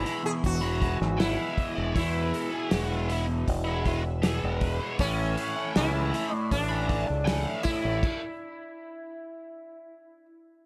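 Trippy and hazy, this psychedelic rock passage moves at an unhurried 79 BPM in straight 4/4, rooted in E major with a shift from E to A at 5.0 seconds. A buzzing, shimmering sitar carries the melody up front, its plucked notes trailed by tape echo, while an overdriven electric guitar, double-tracked and bright with a flanger, drives a low riff beneath it. A growling fingered bass, punchy and overdriven, anchors the bottom, and a cloth-damped drum kit adds thuddy weight with a fat snare, tight kick and dark cymbals. Very quietly behind them, a smooth tonewheel organ holds sustained chords through a slow rotary speaker. The band stops at 8.0 seconds, with the drums falling silent by 8.2, leaving the sitar to ring on alone until about 10.3 seconds in the studio ambience of this cut from a longer piece.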